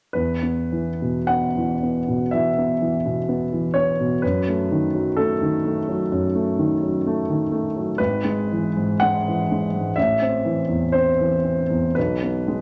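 Passionate and warm, this short romantic classical character piece in E major unfolds with rubato at 50-65 BPM in 4/4 on a solo grand piano, whose intimate, natural, up-front tone carries audible action noise as it spans G#1 to F#5 through harmonies such as D#dim/F# at 4.2 seconds and Am at 10.0 seconds, framed by a moderate large-studio reverb.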